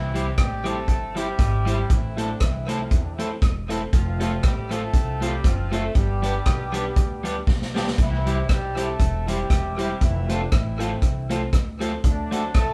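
A dark horn section carries the melody from the opening moment in octave doubling, its light vibrato sounding distant and roomy, while a woody pizzicato upright bass with steel strings supports it underneath. This is a joyful, cheerful ska passage with a gentle swing, cut from a longer piece and played by a band together in one room with moderate studio reverb. An electric guitar at the edge of break-up, picked and slightly gritty, supplies the accompaniment, and a warm upright piano adds stabs from the background. The swinging big-band drum kit sits up front with a boomy kick, a medium-tuned snare, hi-hat and rim clicks, and it plays a short fill at 7.5 seconds. The harmony moves from C through Am, F and G, returns to C and F, and lands on D7 near the 12-second mark, leaving the phrase open as the excerpt ends.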